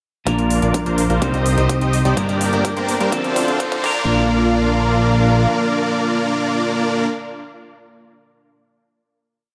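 Triumphant and uplifting, this short festival progressive house piece in Bb major at 126 BPM builds from 0.3 s under a filter sweep, led by a huge, detuned supersaw riff up front in pulsing gated chords, with a twangy clean electric guitar through phaser and analog delay, a lush chorused pad sitting in the background, and a fat, nasal analog bass, all four of them pumping with sidechain compression, over an overdriven, punchy four-on-the-floor electronic kick with metallic programmed hats and crash that play a drum fill before stopping at 3.9 s, plus a very quiet riser, leading into a final hit at 4.1 s that rings out in a dreamy, reverb-soaked plate.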